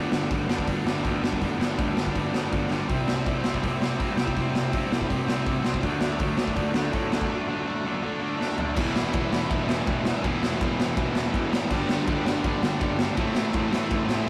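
Punk rock at 163 BPM in G major, energetic and upbeat, this short cut from a longer piece drives two bright, picked guitars, one crunchy and overdriven and the other tight and distorted, over a growly, fuzz-laden picked bass and an up-front garage drum kit with a punchy kick, a medium-tuned snare and a gritty, pumping stone-room sound. Drum fills land at 2.7 s and just before 8.8 s, where a break gives way to a new passage on E minor and a third, double-tracked overdriven guitar joins the riffing. The whole take has the rough, saturated feel of a rehearsal room with light reverb, the guitars sitting behind the drums.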